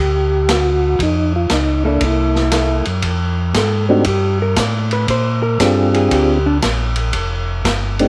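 This soul jazz organ trio excerpt has a bluesy, soulful mood and swings at 117 BPM, with one tonewheel organ carrying a soft, flute-like melody with percussive attack and chorus vibrato through a slow rotary speaker while a second, round and dark organ voice plays the bass with audible key click. An acoustic drum kit with dark cymbals and a punchy kick joins at 0.5 s on hi-hat, ride, snare and kick, and a compressed, fingered hollow-body electric guitar enters at 1.8 s, then steps out for a solo as the second section begins at 3.0 s. The sound is dry and close, with the organ bass and drums up front.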